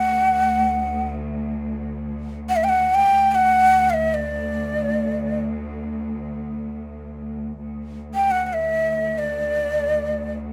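A breathy, end-blown ney sits up front with soft-attacked, wavering vibrato, carrying a festive yet stately Persian modal melody between D5 and G5 in free time. Beneath it, a clear, lush cello section sustains a bowed drone on D2 from the start to 10.5 seconds, all within a moderate studio reverb in this short excerpt tuned to A4 = 443 Hz.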